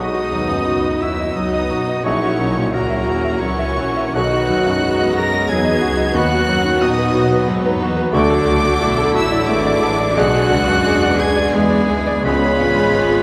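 Tragic and brooding, this classical excerpt in B major moves in a rubato 3/4 at roughly 77-93 BPM, led by an up-front concert grand piano with deep bass and short sustain, joined by a vibrato-rich chamber violin section singing the melody high above. Around them, a second violin section, a solo oboe, a close-miked clarinet and a mellow, straight-toned flute ensemble carry second lines, while a distant bassoon, a background viola section and a soft-attack French horn section fill in chords over bowed cellos and a clear double bass section. The harmony passes through Dmaj7 and G#m7b5/B onto C#, where hard-mallet timpani enter at 12.2 seconds, all set in a moderate concert hall reverb.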